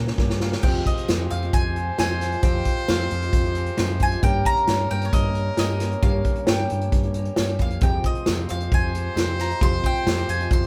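A straight 4/4 pulse at 134 BPM drives this stirring, bittersweet indie folk piece in F minor, tuned to A4 = 442 Hz, with an arrangement that builds. It opens with a drum fill over a Gdim chord on an acoustic kit played with bundle sticks, featuring a punchy kick, a medium-tuned snare, hi-hat and dark crash cymbals, sitting up front yet roomy. A boxy, woody, fingerpicked ladder-braced guitar with old strings sounds only until 0.6 s. From there the harmony alternates between Fmadd9 and Gdim as a bowl-back mandolin carries the picked, double-stringed melody, joined by a soft-attack, classical-style trumpet on a distant second line, while a concert-style picked steel-string acoustic guitar and a round, direct fingered electric bass support underneath. A very quiet grand piano with audible action noise and short sustain enters alongside a smooth-topped French horn section laying tight sustained chords in the background, and a jingly tambourine joins faintly from a large room at 1.1 s. 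The band plays live in one room with light reverb, in a passage cut from a longer piece.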